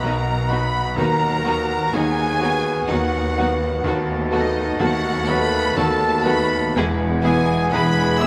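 This passionate, lush excerpt from a romantic movement for piano and orchestra opens with a bright, brilliant grand piano carrying the melody alongside a dark, expressive violin section with soft-attack vibrato, moving in a rubato 3/4 at 62 BPM in B major. Around them, a present clarinet, an airy flute and a vintage-toned oboe weave second lines with a focused, distant second violin section, while a smooth viola section and a roomy bassoon fill in accompaniment over cello and double bass sections anchoring the bass. At 1.0 seconds, a tight trombone section and a shadowy French horn section join very quietly with sustained chords as the harmony moves from B toward E, all bathed in a lingering concert hall reverb.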